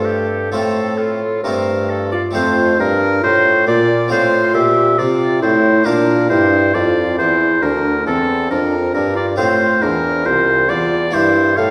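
Radiant and serene, this baroque-style sonata movement with continuo, cut from a longer piece, unfolds in F major at 68 BPM in 4/4 with a rubato feel. A tenor recorder carries the melody with an airy, wooden, straight tone and a touch of chiff on its tongued notes. An oboe sits up front on the second line, its clear classical sound carrying light vibrato. Beneath them a bassoon holds the bass with a soft attack and its own light vibrato, while a harpsichord fills out the accompaniment with a full, brilliant, plucked French-style sound from three sets of strings. All four parts play throughout, and the music moves into a new section at 2.3 s, its harmony passing from F through F/A and Bb, back to F, and on to C7/G near the close, all heard from further back in a wet recital hall.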